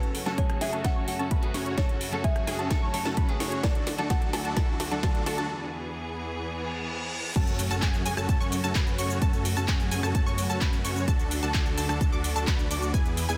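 This euphoric, emotional festival progressive house excerpt at 129 BPM in F# minor opens on a woody kalimba melody with delay, floating over bright, biting symphonic strings, lush delayed pluck arpeggios, a huge compressed supersaw riff with tape coloring and a low-pass filter, a house kit with cracking snare and metallic hats, and a very quiet riser, with a clean, chorused electric guitar joining at 0.3 s and a punchy, up-front kick at 0.4 s. After a drum fill and a brief break marked by a reverse cymbal, the drop lands at 7.4 s with an impact and a thick, detuned saw bass, while sidechain pumping breathes through the strings, pluck, supersaw, guitar and bass over chords moving from F#m to D. The sound is dense and heavily limited, set in light digital ambience.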